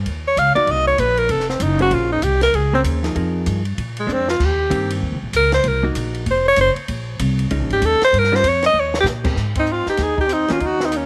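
Small-group swing and bop jazz at 193 BPM in a relaxed, playful 4/4 swing, cut from a longer piece, with a clear, close-miked alto saxophone taking an up-front solo with vibrato from the start over a woody, pizzicato upright bass, dark, clean hollow-body guitar chords and a compact cocktail kit with dark cymbals and a high-tuned snare. The drums add short fills at 4.1 and 8.7 seconds as the changes move through half-diminished and minor ninth and eleventh chords toward Eb6. A breathy, dark trumpet with a smooth top enters at 9.6 seconds for a brief second line, all set in light reverb.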